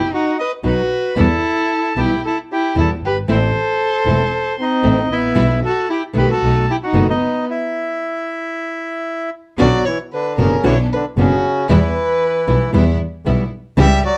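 A rubato 4/4 tango, tense and melancholic, in which a reedy, boxy bandoneon carries the melody over an expressive bowed violin second line with portamento, a focused, smooth-topped bowed double bass, fingerpicked classical nylon-string guitar entering at 0.6 s, and intense, bright string-section stabs set in the background, all halting at a stop from 7.5 to 9.6 seconds before a new section, in a dark production with light reverb.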